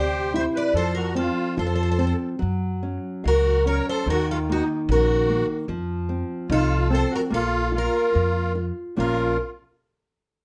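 A mournful, longing fado-style ballad in Bb harmonic minor, unfolding at 73 BPM in 2/4 with a rubato feel, this short cut from a longer piece sets a picked twelve-string acoustic guitar on the melody, its full-bodied, octave-doubled tone shimmering above a reedy musette accordion second line touched with slapback echo. Alongside them, a dark, fingerpicked nylon-string guitar carries the accompaniment up front with audible finger squeak, while a woody, growly pizzicato upright bass anchors the low end, all four parts playing from 0.0 to 9.4 seconds in a moderate studio reverb. The harmony moves from C through a run of power chords (F5, Gb5, Eb5, F5, Bb5) before settling on Bbm at 9.0 seconds as a new section begins.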